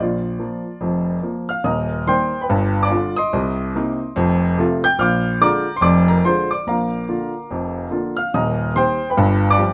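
A buoyant swing in four drives this playful stride jazz fragment, cut from a longer piece, with a lone grand piano carrying it from 0.0 to 9.7 seconds across a broad span from its deep bass to its high treble. The piano sounds smooth and vintage, sitting up front in a moderate club reverb. Its harmony moves through Bb, Eb, G7, Cm7, F7 and Bb7, then returns to Bb, Eb and G7.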